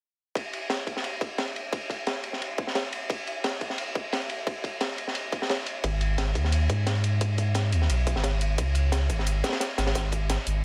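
A straight 4/4 break drives this dreamy, soulful liquid drum and bass excerpt: a gritty, saturated breakbeat kit with dark ride cymbal and a high-tuned snare sits up front under a filter sweep, joined by a tight electronic kick and bright, overdriven electronic hi-hats in the background, until a deep sub bass with octave, blending sine and triangle tones, enters at 5.8 s, all in a small room reverb.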